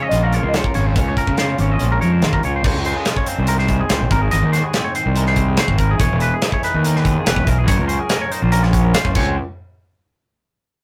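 A straight 4/4 pulse at 143 BPM drives this bright, wistful math rock and midwest emo fragment in Db major, where a slightly broken-up, lo-fi guitar through a small old amp carries a brief harmonic-tremolo melody and a double-tracked crunchy guitar plays a phased riff in the background, both gone within the first 2.4 s, while two clean, compressed, twangy guitars supply accompaniment and arpeggios over a Dbmaj7, Ab9, Emaj7 and Gbmaj7 progression, a round, fuzzy, overdriven fingered bass sits up front beside a tight-kicked acoustic kit of crash, hi-hat and medium-tuned snare, and the rough rehearsal-room sound adds saturation.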